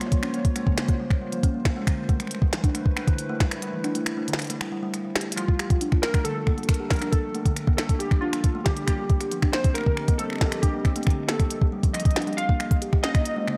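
The up-front, soft electronic kick anchors this melancholic, cerebral IDM fragment in G minor at 137 BPM alongside a glitchy kit of finger snaps, clicky hats and a tiny snare in small room ambience, while a woody, hollow kalimba carries gritty 12-bit arpeggios through analog delay. Beneath them a dark, warbling tape-like pad holds slow-attack chords with chorus and sidechain pumping, moving from Bbmadd9 through Am9, Gm9 and Cm7. After a break at 3.6 seconds and a drum fill at 5.2 seconds, detuned lo-fi synth keys with tape echo bring in a mellow, nostalgic melody at 5.4 seconds, all set in an echo-heavy mix with light reverb.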